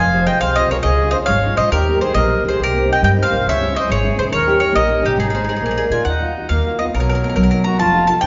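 Heard through a lush recital-hall reverb with a softened, rolled-off top, this brief fragment of a romantic, passionate Italian folk serenade sways in a rubato 6/8 at 139 BPM (dotted quarters). A bright, up-front bowl-back mandolin picks the melody on its doubled strings, while a reedy, boxy single-reed accordion in dry tuning carries a second line over a full-bodied, fingerpicked nylon-string guitar and a woody pizzicato upright bass on steel strings. The opening passage moves from Fm through Db, Eb and Cm7 to a Bb7 turn, then at 6.1 seconds a new section shifts to Ebmadd9 and Bmaj7.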